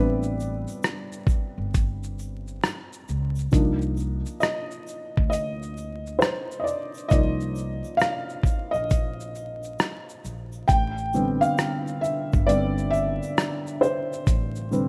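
A rough home-demo mix with vinyl crackle and small-room ambience frames this nostalgic, melancholic lo-fi hip hop excerpt at 67 BPM with a swung feel, where a soft, intimate felt-muted upright piano, up front with audible action noise and a cassette-tape, low-pass tint, carries the lead over Am11 and Cm11 chords, joined by woody pizzicato upright bass, a gritty, compressed sampler-style drum kit with thumpy kick, hi-hat, rim click and shaker, and a grainy egg shaker tucked in the background, before the music moves into a new section at 10.7 seconds.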